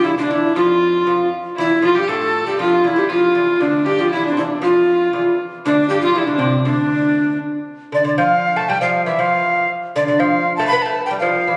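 A driving, ancient mood runs through this short medieval dance, cut from a longer piece and moving at 118 BPM in a straight 2/4. A breathy, mellow tenor recorder carries the melody up front, its wooden tone tongued with audible chiff, a touch of vibrato, rolled-off highs and a slightly unsteady quality. Beneath it, a fingerpicked lute plays a second line from start to finish, its bright, delicate gut double strings, some doubled at the octave, also sitting close to the listener. A single bowed fiddle adds a rich, nasal, reedy gut-string voice as another second line until 7.4 seconds, after which the recorder and lute carry on together. The sound has the feel of a phone recording made in the room, bathed in a wet concert-hall reverb along with a club-like ambience and compression.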